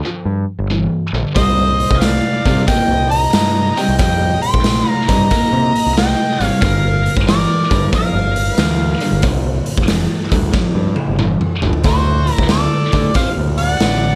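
The clear harmonica carries the melody from 1.4 seconds, its light vibrato and punchy attack sounding distant and roomy through overdrive and slapback echo, in this heavy, smoky blues rock and southern rock excerpt cut from a longer piece. Underneath, a tight, double-tracked distorted guitar picks the riff from the very start, joined almost at once by a growling, round picked electric bass with overdrive. A nasal lead guitar with a parked wah adds an overdriven second line, sitting lower in the mix than the other parts. The raw garage drum kit plays up front with a punchy kick, medium-tuned snare and gritty, saturated tone in a bright stone room that pumps, and it breaks into a fill between 10.5 and 11.8 seconds. At 92 BPM in 4/4 with a swung eighth-note feel in G minor, the harmony opens on a thirdless G7, moves through Cm7 and Gm7, and lands on D7, all bathed in light reverb.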